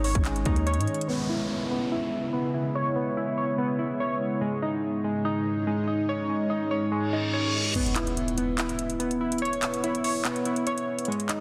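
Trap-flavored hip hop at 144 BPM in a half-time feel, this melancholic yet hard-hitting excerpt in C# minor opens with a growling, buzzy 808-style bass and a trap kit with a hard-clipped kick and metallic hats, beneath warbling, nostalgic lo-fi synth keys whose detuned arpeggios, treated with chorus and tape echo, run throughout, and an ethereal, airy pad holding sustained chords under a phaser and ensemble chorus until 7.7 seconds. The bass drops away at 0.9 seconds and the drums follow at 1.1 seconds, as a filter sweep and a downlifter carry the music over C#m7 and G#sus4, with a reverse cymbal rising into an electronic impact at 7.8 seconds. There the drums return with crash, handclaps and hi-hat while the kick stays muted, all within a dense, heavily limited modern master with light reverb.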